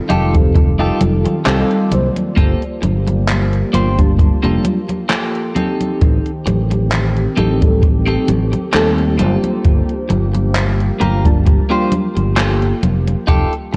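A growly, bright fingered electric bass sits up front in this hazy, nostalgic vaporwave piece, a short cut from a longer work moving at a slow 66 BPM in 4/4 with a light 16th-note swing, in G minor and tuned to A4 = 439 Hz. A boomy acoustic kick drum in a studio room anchors the groove beside a gated 80s digital drum machine of congas, handclaps and hi-hat, whose tape-warmed, sampler-style hits carry gated reverb and were re-recorded in a small room. A clean, picked and scooped electric guitar plays a compressed riff through lush chorus and analog delay, while a soft, round FM electric piano with a dark noise layer comps through ensemble chorus and analog delay until it stops at 12.1 seconds. Underneath, a warbly, detuned pad of sawtooth and triangle tones holds slow-attack chords in the background, coloured by chorus, built-in reverb and vintage 12-bit sampler grit. The harmony drifts from F9 to Gm9, through Am7b5 and back to Gm9 at 9.2 seconds, and the whole mix carries the light reverb and digital ambience of a cassette tape.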